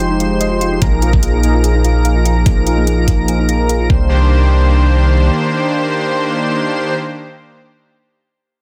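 Rhythm comes from a half-time 4/4 pulse at 146 BPM with a light swing on the 16ths, setting an emotional, lush future bass mood in C minor for this short cut from a longer piece. Crisp electronic hi-hats and a knocking electronic kick drum sit in a small room ambience, with the kick arriving at 0.8 seconds and the drums dropping out by about 4 seconds. Underneath, a deep, mellow 808-style bass with a sine tone and long decay sits up front, while a smooth, detuned supersaw riff carries a filter sweep through the opening and breathes with sidechain pumping and digital delay. From the very start, an airy, dreamy lead plays soft, bright arpeggios with chorus and vibrato alongside a round, tine-like synth pluck that glimmers gently in the background. The harmony moves from Fm9 to Bb7sus4 and settles on Cm9 near 3.9 seconds, all wrapped in light reverb and digital ambience.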